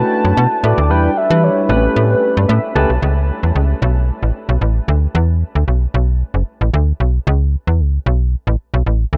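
A snappy, metallic FM bass sits up front through the whole 9.2 seconds of this slick, danceable early-eighties boogie funk excerpt. Over its opening stretch, a round, horn-like synth lead with vibrato and chorus carries the melody, and a barky tine electric piano comps through a combo amp and plays a short fill from 2.2 to 3.0 seconds. After that, the bass carries on alone in a dreamy mix soaked in vast ambient reverb, with a faint mains hum underneath.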